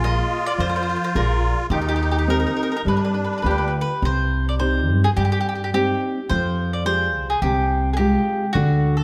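Passionate and wistful, this fragment of Italian folk moves with a loose, lightly swung rubato feel as a bright, double-strung mandolin carries the melody up front over fingerpicked classical nylon-string guitar and a dark, thumpy pizzicato upright bass, while a reedy, shimmering musette accordion adds a second line until 3.7 seconds, the ensemble sitting in a moderate stage reverb.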